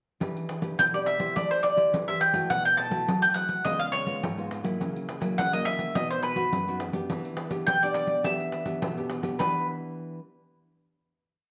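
A short samba and choro piece in E minor at 104 BPM, nostalgic and yearning, where a bright, up-front mandolin with slapback echo picks a motif-based melody in period phrases from 0.8 seconds, its doubled strings giving a woody ring. Beneath it, a dark nylon-string guitar with old strings plays classical-style fingerpicked samba accompaniment of thumb bass and syncopated plucked chords, while a jingly pandeiro struck with hard hands adds percussion. A moderate echo-chamber reverb frames the trio, and the piece closes on a final chord from 9.4 seconds, with the guitar sounding last until 10.2 seconds.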